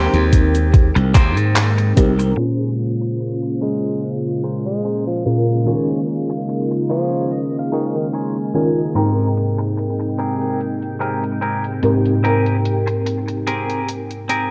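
A dreamy, faded vaporwave fragment at a lightly swung 73 BPM in Ab major opens on a round, chorused FM electric piano with analog delay, a thick, warbling detuned pad and a twangy, compressed clean electric guitar riff through lush chorus and delay, joined briefly by a growly, punchy slap bass and a thumpy, overdriven electronic kick that both drop out before 2.4 seconds, when a filter sweep begins over a tape-warm 8-bit drum machine of cabasa, handclaps and hi-hat in gated reverb; a clear tenor saxophone with vibrato, 12-bit sampler grit and tape echo carries the melody from 3.6 seconds, the guitar adds a fill at 6.5 seconds, and a cassette-tape haze with light reverb drifts over jazzy ninth chords.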